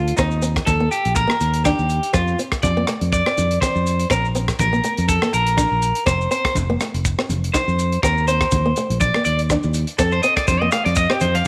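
A twangy, slightly broken-up electric guitar leads this joyful highlife guitar-band passage, playing arpeggios through tape echo from the very start to 11.5 s as a clean solo line up front. It sits in F mixolydian at 122 BPM in 4/4, with a light swing on the sixteenths, and the harmony moves between F and Eb chords with a brief stretch where the band drops the chords. A fingered electric bass, direct and amped, holds the low end up front, while a tight funk kit with a mid-forward sound and tight kick keeps hi-hat, kick and rim click going. A boxy, fingerpicked acoustic archtop guitar adds accompaniment, with very quiet, damped congas of thick skin and grainy, mellow maracas tucked into the background from 0.2 s. An echo chamber reverb and small-room ambience give the whole band a warm, close glow, and the passage is cut from a longer piece.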